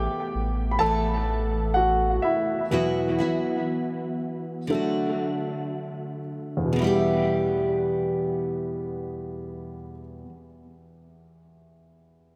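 Longing and melancholic, this slow pop excerpt in E minor moves in 4/4 at 56-65 BPM with a straight feel, and it slows down across its opening 6.8 seconds. A grand piano, polished and present with a short sustain, carries the accompaniment and takes a solo through that opening, its analog delay adding trailing repeats. Beside it, a picked steel-string acoustic guitar plays arpeggios with a woody, full-bodied jumbo tone and the character of old strings, also touched by analog delay, until 10.4 seconds. A deep, mellow sub bass with an octave holds a sustained low A underneath before dropping out at 2.2 seconds. The harmony passes from Asus2 to Esus2 and D, then settles on Em as the second section begins at 6.8 seconds. Moderate spring reverb and small room ambience give the echo-heavy mix a close yet lingering space.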